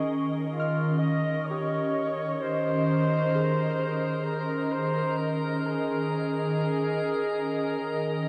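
At a slow 65 BPM in straight 4/4, this weightless ambient fragment in E-flat mixolydian rests on a single Eb7sus4 chord, held by a glassy, ethereal FM pad with ensemble chorus that sits up front. A distant, roomy flugelhorn fades in with a warm, lightly vibrato-tinged classical solo line through analog delay, while muted, felt-like synth keys play dark, intimate arpeggios in the background and fade out. At 2.7 seconds a calm texture of drifting sine overtones joins, and the whole dreamy mix is soaked in a huge 7.5-second reverb with a soft, cassette-tape haze.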